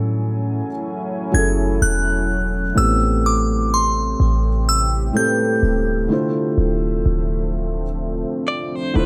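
A lightly reverberant sound frames this sensual, moody contemporary R&B passage, cut from a longer piece, at a slow 63 BPM with a swung sixteenth feel as the harmony moves from F#m7 through Am7 to Dm7. A felt-muted upright piano plays soft, intimate accompaniment over a boomy 808-style bass and a dark, detuned ambient pad that holds sustained chords through chorus and its own reverb. A glassy FM synth bell carries a crystalline melody from 1.3 to 6.1 seconds with chorus, phaser and tape echo, and at 8.5 seconds a twangy, direct-recorded clean electric guitar enters with picked arpeggios colored by tremolo and tape echo.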